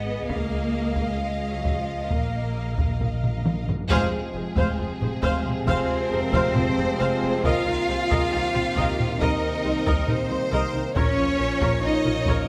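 An excerpt of heroic, dramatic epic orchestral film score at 68 BPM opens with lush bowed strings, a rich violin melody over a background second violin line, focused viola accompaniment, a clear, distant cello bass and a rich double bass, with dark, roomy French horn chords in the background, as hard-stick taiko drums enter at 0.3 seconds, a very quiet timpani fill with hard mallets leads into a band accent at 3.9 seconds where the music settles into F minor and a smooth trombone section adds sustained chords, all in a moderate scoring-stage reverb.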